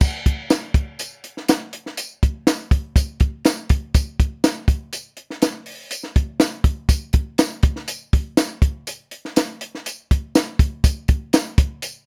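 Uplifting and warm, this soul excerpt in a straight 4/4 features a compact cocktail drum kit up front, with a punchy kick, high-tuned snare, dark cymbals including crash and hi-hat, and a jingly, bright tambourine set close and dry, all in a dry room with little reverb across its roughly 12 seconds.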